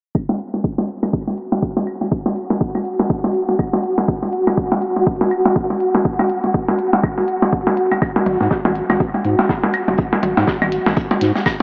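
A deep, up-front electronic kick and tape-warm, layered claves and percussion blips with analog delay open this cool, quirky minimal techno excerpt at 122 BPM with 58% swing on the 16ths, joined by clicky electronic hi-hats in the background and, from 1.3 s, a tense, swarming, detuned sine drone with granular texture, its own reverb and sidechain pumping, before a loose acoustic indie kit with a medium-tuned snare and pumping, filtered hats enters at 8.0 s, followed shortly by a thick, saturated triangle sub bass, the mix set in a huge ambient reverb under a filter sweep and a small-speaker low-pass tone.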